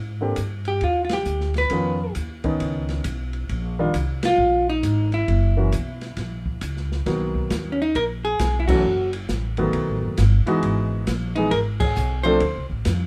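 A dark, clean hollow-body electric guitar carries the melody up front, its picked lines sitting between C#4 and C5 in this playful, swinging small-group jazz piece at 134 BPM in 4/4. Beneath it, a woody upright bass with steel strings plays pizzicato, and a smooth, vintage grand piano with short sustain fills in the accompaniment, both placed close to the listener. The open drum kit sits further back, its dark cymbals, medium-tuned snare and boomy kick heard in a small room with a rolled-off top. Band accents punctuate the groove, and at 7.1 s the harmony settles into B major, moving from Bmaj7 through F#m, B7 and Emaj7 before a Dm7 arrives at 12.4 s. Light reverb gives the short cut from a longer piece a warm, intimate glow.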